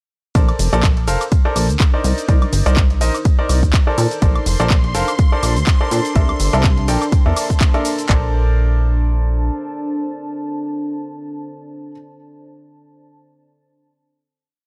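A four-on-the-floor kick and clap drive this euphoric piano house piece at 124 BPM in Bb major, with overdriven, swung programmed hats, shaker, ride and woodblock crackling above a punchy, wave-folded analog bass riff that stops at 9.5 seconds. A bright, worn baby grand plays close-voiced dotted-rhythm chords through tape echo and sidechain pumping, moving from Bbmaj9 through Cm9 and C13, while a deep, moody pad with built-in reverb slowly shifts through its chords and a shimmering vintage string machine holds a high note from 4.2 to 8.1 seconds. After the drums drop out, the piano and pad, joined briefly by the bass, ring on a final Bbmaj9 chord, all captured as a dry, gritty cassette-tape recording.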